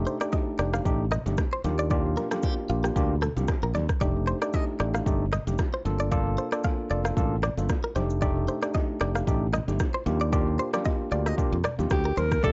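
A punchy, bright fingered electric bass drives this joyful, breezy afrobeats excerpt at 114 BPM with a light 16th-note swing. Up front alongside it are a deep-kicked electronic drum kit with rim click and shaker and a worn, slightly out-of-tune tine electric piano over F13, Ebmaj7 and Gm7 chords. A twangy, compressed clean guitar riff runs through analog delay, and distant, very quiet bongos and congas sit in a large room. A breathy, mellow alto saxophone melody enters at 11.9 seconds, and a lush, detuned unison pad appears at 12.4 seconds, all in a dry, gritty cassette-tape sound with transformer saturation.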